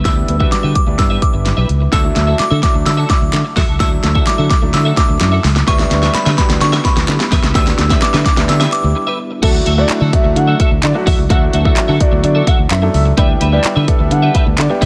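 Dance-pop at 128 BPM in D major, this summery, upbeat excerpt cut from a longer piece moves between G6 and Dadd9 chords. A punchy, up-front electronic drum kit with a fat snare and handclaps drives the build-up, running a drum fill until a short break at 9.0 seconds, while a round, dark fingered electric bass pumps against the sidechain beneath it. A clear baby grand piano supplies pumping accompaniment, a bright, clean twelve-string electric guitar plays a compressed riff with ensemble chorus, and a mellow, very quiet organ-like string pad holds soft, phased chords. A glassy FM synth bell carries the high melody with chorus, tremolo and dub echo until 9.2 seconds, and crisp group handclaps sit in the background from 2.4 seconds. At the drop at 9.4 seconds, an expressive portamento lead with vibrato and a smooth, wave-folded tone takes over the melody, all set in a light reverb.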